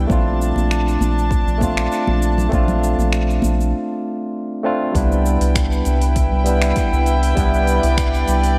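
A lightly swung sixteenth-note groove in four sets an easy sway for this sunny, relaxed sunset chillout piece, cut from a longer track. An overdriven electronic kick sits deep in the background, joined by a deep house kit whose cabasa, finger snaps and metallic hats carry a gritty, layered edge, while close, dry congas add acoustic colour until 3.6 seconds. Up front, a round analog bass holds a dark, wave-folded low end with a fast attack and long sustain, and a bright, barky tine electric piano plays accompaniment through a combo amp, trailed by tape echo. Alongside it, a chamber string section sustains nasal, reedy chords with a gut-string, period-style tone and a smooth top. The harmony rests on a Bbmaj9 before a break at 3.7 seconds, then lifts to a Cmaj7 as a new section opens at 4.9 seconds. A lush hall reverb soaks the mix in a dreamy digital ambience.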